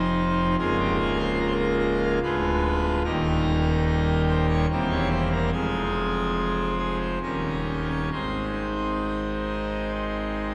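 A full pipe organ sounds alone from the first moment, opening on an F7 chord that sets off a serene, reverent chorale in Ab major. The playing moves at about 72 BPM in 3/4, with uneven beats and a free, rubato feel that lets each chord breathe. Heard up front with bright mixtures drawn, the organ has a majestic, brilliant tone and a romantic voicing that spans from Db1 at the bottom to Db5 at the top. The harmony passes through Bbm7/Db, Ddim7, Eb, C7/E, Fm and Eb7 before settling on Ab at 8.1 seconds. A long, wet church reverb of about 3.2 seconds surrounds every chord, and the passage, tuned to A4 = 441 Hz, is cut from a longer piece and ends at 10.5 seconds.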